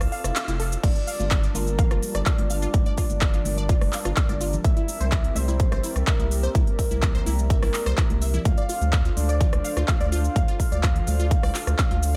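A straight 4/4 groove at 126 BPM drives this bittersweet, dreamy progressive house excerpt in G dorian, where a punchy, up-front electronic kick drops out from 0.4 to 0.8 s before the drop lands over a big-room kit with crisp hats, handclaps, rim clicks, shaker and crash, background congas with sidechain pumping, a deep, round analog bass, a lush detuned unison pluck arpeggio with delay, a mellow background pad with chorus, and a full-bodied octave-layered lead melody with chorus, phaser, vibrato and delay, while a very quiet glassy texture drifts only through the first 0.8 s over chords moving from Fmaj7 to Gm7, C7 and Dm7.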